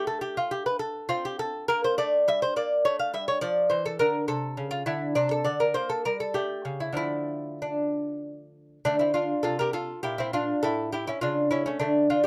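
In a flowing 3/4 with rubato at roughly 94-106 BPM, this grave baroque-style dance in D minor, cut from a longer piece, features a solo lute played up front, its bright, delicate gut strings fingerpicked in doubled courses with some octave pairs across a range from A2 to F5, captured by close, detailed microphones in a dry space as the harmony moves from A minor toward D minor at 3.4 seconds before a new section begins at 8.8 seconds and settles on A at 10.6 seconds.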